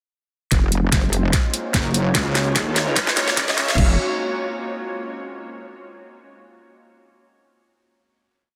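A half-time dubstep beat drives this short, heavy and aggressive piece, with a layered electronic kit pairing a knocking kick and crash alongside a huge, up-front snare and metallic closed hats. Beneath it, a detuned, saturated sawtooth wobble bass plays phrases of changing wobble speed, while a bright, morphing wavetable pad holds sustained chords from 0.9 seconds with ensemble chorus and sidechain pumping, and a background riser and filter sweeps carry the build. A nasal, formant-filtered second wobble bass appears briefly at 3.4 seconds before the music lands on a final chord at 3.8 seconds.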